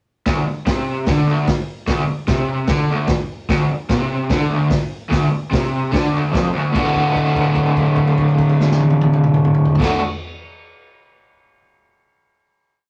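Cut in a rough rehearsal room with tube saturation, cassette-tape grain and a short, wet studio reverb, this brief garage rock piece has a swaggering, raw feel in a straight 4/4. An overdriven, double-tracked electric guitar sits up front with a picked single-note riff touched by tremolo, then lands on a final chord at 6.7 seconds and holds it until 9.8 seconds. Beneath it, an acoustic drum kit with dark cymbals, a medium-tuned snare, a tight kick and toms, coloured by gritty 12-bit sampler texture and a rolled-off top, drives a garage stomp groove.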